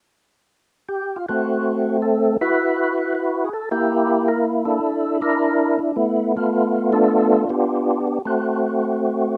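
Jazz with a greasy, bluesy mood and a swung 4/4 feel, this short excerpt cut from a longer piece features a lone percussive tonewheel organ that enters at 0.9 s and plays until 9.4 s. Its fat, lightly overdriven tone carries key click, second-harmonic percussion, chorus vibrato and a slow rotary speaker, sitting up front in a dry, open-air sound with little reverb. The harmony moves through rich extended chords, from G7sus2 and Am69 to Bbmaj7#11, G9 and a rootless D7.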